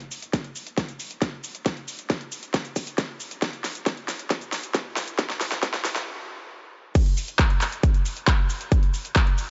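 A dark, lightly reverberant production frames this bittersweet, euphoric trance excerpt, where an up-front, overdriven big-room dance drum kit of huge snare, metallic hats, handclaps, shaker and crash cymbal drives a filter-swept build-up and drum fill alongside a punchy layered electronic kick, breaks into a brief stop at 6.1 seconds, then crashes into the drop at 7.0 seconds.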